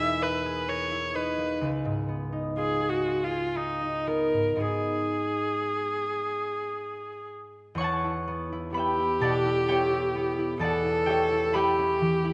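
A moderate scoring-stage reverb surrounds this brief, hazy classical piece, an impressionist duo in triple metre with a freely pushed and pulled rubato feel. Up front, a single bowed viola carries the wistful melody with a rich, focused tone, vibrato and a smooth top, while a concert harp, also close, accompanies with fingerpicked, ringing acoustic strings across a broad span. Lush harmonies such as Emaj7#11 and G#m7 color the opening passage before the music moves into a new section at 7.8 seconds, where the excerpt ends shortly after.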